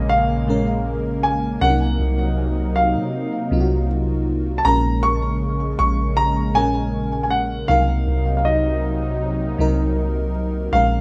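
A concert grand piano carries the melody from the first moment, its intimate, natural tone sitting up front with audible action noise, a short sustain and a digital delay trailing its high notes. This is a moody, late-night contemporary R&B fragment at 79 BPM in a straight 4/4, cut from a longer piece and lasting about 11 seconds. Beneath it, an FM electric piano with a soft pad layer plays lush, dreamy accompaniment, its detuned shimmer thickened by chorus. An analog pad holds smooth, warbling chords that bloom slowly with a vintage sawtooth colour and its own chorus, while a soft 808-style bass sits deep and round at the front, its sine tone striking quickly and then decaying. The harmony moves between Bbm7 and Cm7b5, and the whole mix sits in a moderate small-room reverb with the rough character of a home demo and lossy compression artefacts.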